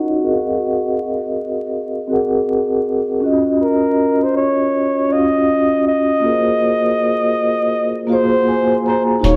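A reflective, nostalgic lo-fi hip hop excerpt at 80 BPM in 4/4, with a swung sixteenth-note feel, set in a dark production dusted with vinyl crackle and a moderate spring reverb. A breathy, whispered flugelhorn carries the jazz-style solo melody up front, its soft attack and vibrato giving an intimate tone through a low-pass filter. Soft-mallet vibraphone rings beneath it with a metallic shimmer and fast motor vibrato, colored by cassette tape and sounding boxy, as if in a small room. The harmony moves from Ab13 to Ebm9 and back to Ab13 under a filter sweep that runs until 9.2 seconds, and the vibraphone adds a fill from 7.7 seconds. At 9.2 seconds a deep, thick sub bass on Eb1 arrives with a saturated punch, joined by a muffled, pitched-down electronic hi-hat, just as the passage cuts off.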